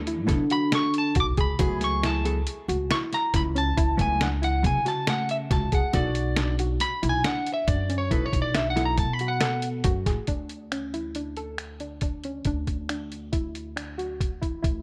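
A lightly driven lead guitar, slightly broken-up and picked, sits up front and carries the melody in a solo that runs from 0.5 to 9.7 seconds. This excerpt of progressive instrumental band music moves at 138 BPM in 5/4 with a straight feel in B dorian, and its mood is driving and tense. Underneath, a woody pizzicato upright bass with steel strings holds the low end, while a compressed, pitched-down sampler-style drum kit sits up front with a muffled tone, a thumpy kick, a fat snare, hi-hat and finger snaps. A dark, clean hollow-body jazz guitar plays fingered accompaniment, and a soft, round synth pluck with chorus spins arpeggios. In the background, a bright, plectrum-plucked fretless oud with double strings adds a second line. The chords move from Bm7/D through F#m7/C# to Bm7, then turn to Dmaj9 at 10.3 seconds after the guitars and oud have dropped out, and the mix rests in light reverb and digital ambience.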